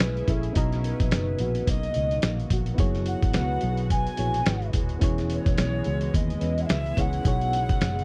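A dry, close 1970s-style studio sound frames this dreamy, laid-back indie and bedroom pop excerpt in B major at 108 BPM with a 16th-note swing, where a breathy, clay-toned alto ocarina with vibrato and chiff carries the melody through analog chorus and slapback echo over a thumb-plucked nylon-string guitar with warbly pitch drift, a reedy, slightly out-of-tune electric piano, a blurred granular cloud pad, a round, foam-muted fingered bass and an up-front, gritty sampler-style drum kit with thumpy kick, as the chords move from Amaj7 through F#9sus4 and E6 to B69.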